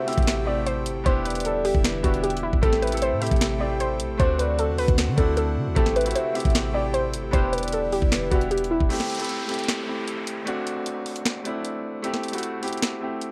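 A tape-softened trap drum kit sits up front, with a knocking kick, sharp snare, bright hi-hats and finger snaps driving a half-time feel at 153 BPM in A dorian. This dark, melancholic hip hop cut moves through Am7, Em7 and D7. Over it, a warbling, dusty pluck carries the melody with chorus, phaser and cassette-tape character. A velvety, gliding synth lead with chorus and analog delay adds a second line in the background, while an airy, breathy pad holds soft sustained chords. A brilliant concert grand piano plays accompaniment throughout, and a deep, boomy 808-style bass anchors the low end. The lead stops at 8.5 seconds, and at 8.9 seconds the pluck, pad and bass drop out for a break. There, the piano and drums carry on to the end of this cut from a longer piece, joined by an electronic downlifter until 12.0 seconds, all in a dry, lo-fi home cassette sound.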